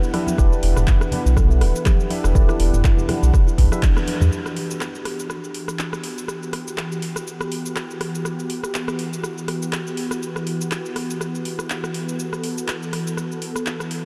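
Afro house at 122 BPM in E minor with a swung 16th-note feel, earthy and driving, cut from a longer piece: a punchy electronic kick and a deep, round sine sub bass sit up front, joined by clean tine electric piano stabs, woody kalimba arpeggios and bright, low-tuned congas in the background, with sidechain pumping on the bass, keys, kalimba and pad. A tape-toned deep house kit with metallic hats, handclaps, rim click, shaker and toms runs throughout beneath a mellow, detuned sawtooth pad on Em7. At 3.8 s a band accent and drum fill close the opening, and from 4.3 s the pad and kit carry on alone over an Em chord in light reverb.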